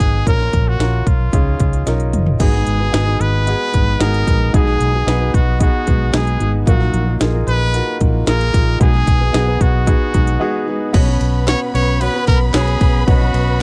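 A brilliant trumpet carries the melody from the start, with light vibrato and scooped notes, over a clear concert grand piano with deep bass and short sustain, both touched by plate reverb. This uplifting, anthemic piano-driven pop cut from a longer piece moves at 112 BPM in a straight 4/4, anchored by a round, foam-muted vintage electric bass sitting up front and a punchy, layered house drum kit with cracking snare and crisp hats. After a drum fill, a dark, full-bodied fingerpicked steel-string acoustic guitar enters in the background at 2.4 seconds with a riff as the chords move through G#m7, B6 and D#madd9/A#. Following a brief break, a lush symphonic violin section arrives at 10.9 seconds on a Bsus2 chord, playing a smooth, expressive second line with plate reverb and delay. A very quiet group handclap from a live room briefly adds human texture near the close, within a dark production that has little reverb overall.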